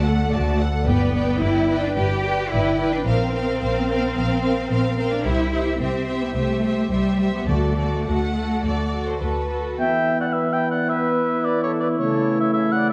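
Moving in a straight 4/4 at 109 BPM, this cinematic, heroic adventure cue opens with a lush, full string body: clear violins carry the melody over a second violin line, focused violas, a rich cello section and close, up-front double basses, while timpani, struck with hard mallets and heard dry in the background, punctuate the passage at 0.9 and 7.5 seconds. At 9.8 seconds the strings give way and the music turns to E dorian, where an airy, distant flute and an up-front, mellow cor anglais share a second line above dark trombones and French horns holding sustained chords, with distant trumpets adding tight stabs. Set in a reverberant concert hall with a dark production, this short excerpt from a longer piece feels determined and swashbuckling.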